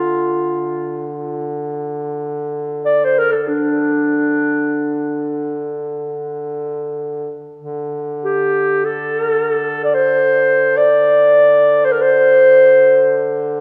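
Unmeasured and in free time, this short excerpt of a Caucasian lament unfolds in D minor with a longing, mournful mood. A dark, distant clarinet carries the melody in a classical style, sitting up front and moving between D4 and D5. Beneath it, a warm, punchy duduk holds a steady drone on D3 in a folk style, its scooped notes lending an earthy ache to the sustained tone. The music presents one phrase and then returns to it at 7.6 seconds. The clarinet's roomy voice falls away at 13.3 seconds, and the drone lingers until 13.6 seconds. A wet church reverb with a long tail surrounds the performance, giving it a solemn, spacious feel.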